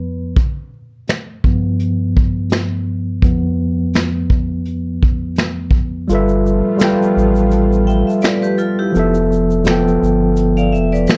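A clean tine electric piano opens this melancholic, nostalgic lo-fi hip hop excerpt, sitting up front and playing through its built-in speakers in a swung 4/4 at 84 BPM, tuned slightly low to A4 = 438 Hz. A vintage brush drum kit joins at 0.4 seconds with a dark, rolled-off acoustic sound of finger snaps, hi-hat, shaker, a medium-tuned snare and a punchy kick, as the harmony moves from G7 to a chordless stretch. At 6.1 seconds the harmony shifts to G13 and a soft dub sub bass enters, deep and round with a sustained triangle and square-wave tone, while the kick drops out. A lush, detuned sawtooth pad with chorus warbles faintly in the background, and from 7.9 seconds a vibraphone struck with hard mallets adds a metallic, ringing second line with slow motor vibrato, analog delay and plate reverb as the chords settle on a rootless Dm69/F. The production is dark and warm, with a moderate studio reverb framing the parts.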